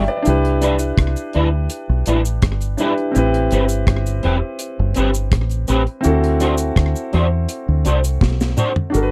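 Bittersweet and longing, this short lovers rock reggae excerpt in a dry, close 1970s-style studio sound moves through Cmaj9, Am9 and D7 as an intimate vintage grand piano with audible action noise and a slapback echo plays accompaniment, a twangy, slightly broken-up electric guitar with ensemble chorus adds picked stabs, a dark, round, foam-muted fingered bass sits up front, a deep acoustic drum kit with a tight kick, medium-tuned snare, rim clicks and slapback echo plays a fill at 8.2 seconds, and a compressed, saturated cabasa sits quietly in the background.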